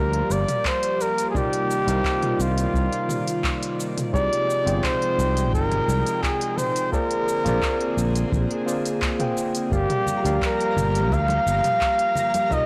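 A straight 4/4 groove at 86 BPM drives this smooth sunset chillout excerpt: a layered deep house kit with cabasa, handclaps, toms and silky hi-hats is joined at 0.7 s by an overdriven analog kick with a deep, electronic thump. Up front, a growly, amped fretless electric bass sustains low notes beneath the Gm7, Cm11, Fm9 and Bb9 changes until 11.6 s. A close-miked flugelhorn carries the melody in a warm jazz style, its scooped notes sitting forward and trailed by tape echo. Beneath it, a bright, clean tine electric piano comps through its own speakers, also with tape echo, while an airy, breathy pad with a soft, detuned chorus shimmer holds long chords. At 10.1 s, twinkling granular sparkles with an octave-up shimmer and dry, hard-handed congas appear in the background. The whole mix sits in a moderate concert hall reverb, yet the recording itself sounds blown-out and overdriven, giving the warm mood a gritty edge.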